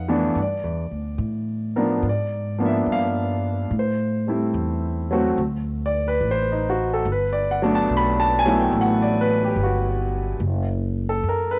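A smooth, vintage grand piano with a cassette-tape tint anchors this tender, romantic swung jazz ballad fragment, accompanying over chords moving from G69 through G#dim7, Am7 and Gmaj9 to F#, while a woody, growly pizzicato upright bass on steel strings sits up front beside it, all in a small room with light reverb that carries the intimacy of a home cassette recording.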